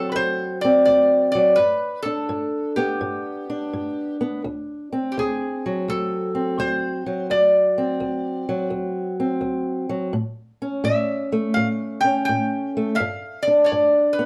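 A metal-body resonator slide guitar and a fingerpicked, ladder-braced acoustic guitar open together, both up front, in a laid-back, gritty piece of acoustic country blues cut from a longer performance. The slide guitar carries the melody between G4 and G5, its tone bright, metallic and nasal, picked with fingerpicks and set in a plate reverb. Beneath it, the old acoustic guitar supplies the accompaniment from D2 to D4, sitting lower in the mix with a dark, woody, boxy sound from its old strings. The tune moves at an easy 84 BPM in 4/4 with a swung eighth-note feel, in D mixolydian, passing from D7 through G and A7 before reaching G7 at 13.0 seconds. A small, wet room reverb surrounds the dark, warm production throughout its 14.3 seconds.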